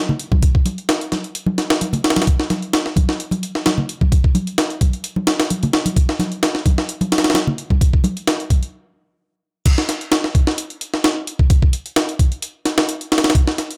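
A slightly swung 130 BPM breakbeat in 4/4 struts with a swaggering, raw energy, driven by a gritty, compressed, pitched-up sampler-style kit that sits up front, with a thumpy kick, a high-tuned snare, hi-hat and crash cymbal. Bright, damped congas with a thin skin sit close and dry beneath it until 8.6 seconds, and the groove briefly stops before a drop at 9.7 seconds carries the drums on alone through the end of this cut from a longer piece, all set in a digital ambience.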